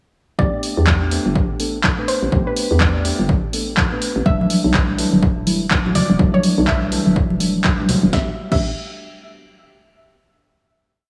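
Hypnotic and deep, this short deep house piece moves at 124 BPM in 4/4 with a 16th-note swing, settling into A dorian as the harmony shifts from Am11 to Em11 and returns to Am11 for a final chord that rings out from 8.1 seconds. A punchy, tape-warm electronic kick holds a four-on-the-floor pulse, while an analog drum machine adds programmed open hats, a punchy snare and handclap backbeat, and a crash, both re-recorded in a small room. At 4.4 seconds congas join in the background, their thick skins playing syncopated high and low hand-drum figures in a live room. Underneath, a hollow, bouncy FM bass plays a syncopated riff with sidechain pumping, and a mellow tine electric piano, heard through built-in speakers, moves one chord shape in parallel in dotted rhythms, with pumping, a diffuse ambient delay and a low-pass filter sweep across the groove. On top, a soft, round pluck repeats a gentle riff melody with chorus and its own diffuse delay. 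The whole mix is dreamy and soaked in a lush hall reverb.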